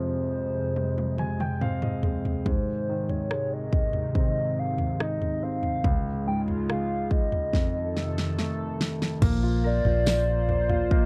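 In a straight 4/4 feel, this tender pop ballad opens with a hollow, woody clarinet-like synth lead carrying the melody with chorus and slapback echo. Beneath it sit a polished grand piano and a shimmering, retro pulse-width pad holding sustained chords through Fm, Ab, Db and F7. A punchy, layered electronic drum kit enters at 0.8 s with a fill alongside a piano fill, and plays another fill leading into 9.2 s, where a round, foam-muted vintage electric bass arrives on a Bbsus2 chord. Shortly after, a jingly tambourine appears briefly in the background, all in a close, dry 1970s-style studio sound with light reverb and an emotional air.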